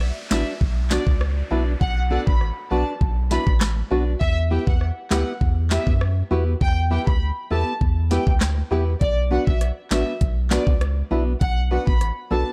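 A bouncy, tough dancehall groove, cut from a longer piece, rides on an electronic afro-pop kit placed up front, with a knocking kick, sharp snare, metallic hats, handclaps and rim clicks, over a deep, thick saturated sub bass. A downlifter sits in the background for the opening 4.2 seconds, while a distant, lush violin section carries the melody with vibrato and tape echo, and a hollow, percussive organ stab with chorus joins a fingerpicked nylon-string guitar playing arpeggios. The dark production keeps the room dry as the chords move from B minor to E minor at 4.2 seconds and back at 9.0 seconds.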